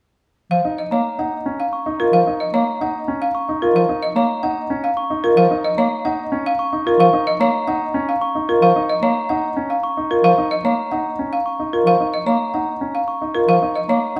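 A wet stone room lends a roomy ring to this bright, hypnotic excerpt of minimalist classical pattern music, moving at 111 BPM in 3/4 over a D#7 harmony with its third omitted. An up-front folk marimba carries the woody, rustic melody, while a distant, warm bass clarinet supplies the low accompaniment from 0.5 seconds. A clear, intimate grand piano with audible action noise and a mellow, bell-like glockenspiel played with rubber mallets weave arpeggios throughout.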